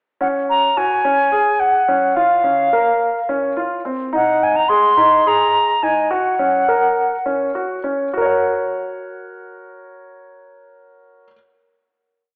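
Shimmering and playful, this short contemporary instrumental piece moves at 210 BPM in an uneven 7/8, set in Gb lydian. A baroque flute carries the melody from 0.2 to 7.5 seconds with a pure, reedy wooden tone, straight and crisply attacked, shaping motif-based song phrases between F5 and C6. Beneath it, a grand piano spins an arpeggiated ostinato that continues until 11.4 seconds, its intimate sound close enough that the action noise of the instrument can be heard. The harmony moves through Gbsus2, Bbm, Ab and Gb, and the tempo slows from 4.1 seconds before the piece settles on a final chord at 8.1 seconds. A wet spring reverb and a telephone-like filtering place the whole performance further back in the room, giving it a distant character.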